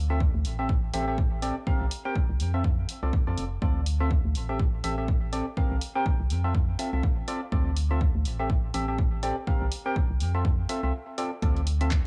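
Piano house with a bittersweet, soulful feel and a swung groove, where a dark, hollow FM bass pumps beneath nasal, wave-folded organ stabs carrying chorus and tape echo, an up-front punchy kick and a drum machine of handclaps and hi-hat re-recorded in a large room, and an echo-heavy mix cycling Am7, C7sus4, Fmaj7 and Dm7 around a brief break at 10.9 seconds.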